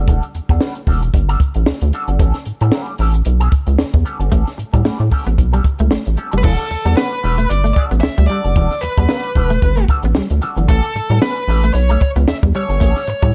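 A rubbery, bouncy square-wave bass sits up front in this sly, funky excerpt at 113 BPM in E dorian, riding a swung sixteenth feel over Em11 and A9. A dry, compact cocktail kit with a punchy kick, high-tuned snare and dark cymbals joins it, while a bright, twangy guitar with an envelope filter and wah adds clean, compressed accompaniment low in the mix. After an opening break, a fingered semi-hollow guitar enters with a chorused riff at 4.3 seconds, and from 6.4 seconds a nasal, overdriven lead guitar with a parked wah carries the melody, all set in a studio reverb within a dark, warm production carrying a faint mains hum.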